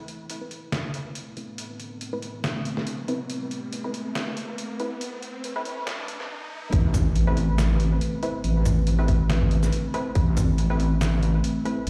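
A half-time groove with a light 16th-note swing drives this dark, cavernous stretch of deep dubstep, cut from a longer piece. A gritty, pitched-down sampler-style kit of hi-hat, shaker and snare runs from the start, while a filtered dub chord stab, muted and detuned with chorus and dub echo, sits over a moody, full-bodied ambient pad whose slow-attack Amadd9 chords are swept by a filter through the build-up. An electronic riser climbs from 1.1 seconds, a brief break arrives just before the drop, and at 6.7 seconds an impact lands as a tight, up-front electronic kick and a heavy, saturated wobble bass on a low A come in. Bright vintage congas with soft hands and dub echo sit in the background from 6.9 seconds, while the kick stops at 10.2 seconds. The mix sounds like a big sound system in a bare room, with large studio reverb and a high-pass filter shaping the whole space.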